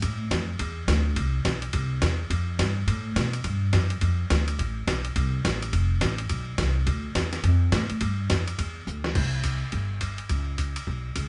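A woody, dark upright bass sits up front in this cheerful, down-home slice of country western swing, its plucked steel strings giving the low line a firm acoustic body. Beside it runs a trip hop sampler-style drum kit, compressed, pitched down and gritty, with a thumpy kick, a medium-tuned snare, hi-hat, ride and crash cymbals, also placed up front. The pairing gives the brisk swung groove an unusual grainy edge. The two parts sound like a band playing together in one room, wrapped in moderate studio reverb, with a rounded top end. A drum fill at 8.9 seconds leads into a new section at 9.2 seconds, and the excerpt is cut from a longer piece.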